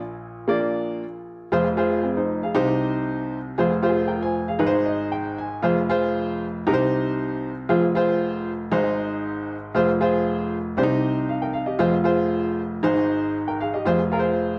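This soul excerpt features a lone upright piano, and it feels danceable and uplifting in a straight four-four pulse. The piano sits up front with a woody, natural tone and short sustain, and a slapback echo trails each note. After a brief opening on Bb, the harmony settles into a repeating cycle of Fm, Cm, Fm and Ab that carries through to the end at 14.6 seconds. Between 4.6 and 5.6 seconds the piano breaks into a fill before resuming the cycle. The moderate studio reverb and dark, warm production give the solo instrument a cozy sense of space, and the tuning sits slightly below standard concert pitch.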